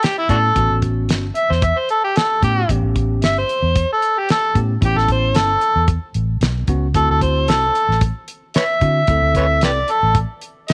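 A straight-eighth soul blues groove at 113 BPM with a light sixteenth-note swing sets a soulful, laid-back mood in this short excerpt, as a gritty, overdriven harmonica solos up front with light vibrato, tongue slaps and scooped notes over a dry 70s drum kit with a fat snare and tight kick, a dark, foam-muted fingered electric bass, and a bell-like tine electric piano sitting softly behind, all moving from A9 to D9 at 7.0 seconds in a small room.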